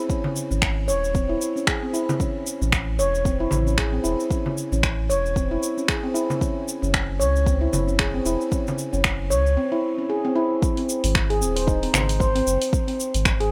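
A swung 4/4 groove at 114 BPM, with a 58% swing on the sixteenths, drives this hypnotic organic downtempo piece: a deep electronic kick sits under a layered deep house kit of finger snaps, dark hi-hats and shaker placed up front, while a small, bright acoustic frame drum plays until 8.8 seconds and returns briefly around 11.9 seconds. A round, sine-toned sub bass with a fast attack and sidechain pumping sustains beneath ringing, airy handpan arpeggios, sounded with sharp finger strokes and trailed by tape echo, over C#madd9, A, F#5 and G# chords. The sound is dry and close, with the warm, meditative handpan out front in the mix.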